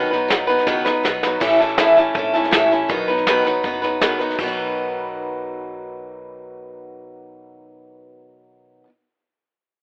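Honky-tonk and classic country with a down-home, heartfelt mood, cut from a longer piece and heard through a rough home-demo mix with a telephone-like sound, light reverb and small-room ambience. A boxy, picked steel-string parlour acoustic guitar sits up front, while a woody, growly pizzicato upright bass stays in the background. A soft brush kit with a medium-tuned snare and punchy kick plays a fill from 0.7 to 1.4 seconds and drops out at 4.5 seconds, while the guitar and bass carry on.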